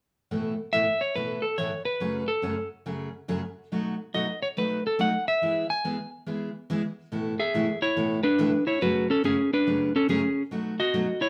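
A live-in-one-room studio sound with moderate reverb carries this cheerful, swinging country passage in A major at 141 BPM, cut from a longer piece. A full-bodied dreadnought acoustic guitar with fresh strings is picked up front as accompaniment, finger squeak and all, moving through Asus2, F#madd9, B7 and E. A clean, scooped electric lap steel guitar enters at 0.7 seconds and carries the melody with fingered slide lines, sitting louder than the acoustic.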